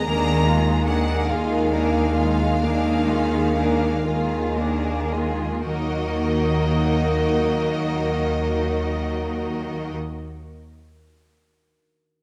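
Solemn and yearning, this slow, rubato classical passage in 12/8 and Eb minor, cut from a longer piece, sets a focused violin melody over a clear, intense second violin line, smooth background violas, mellow soft-attack French horn chords, ringing harp arpeggios, and a bowed cello and up-front double bass holding the low Eb, all easing from a Bb7/Eb chord to Eb minor at 5.7 seconds as the opening slows, within a moderate scoring-stage reverb.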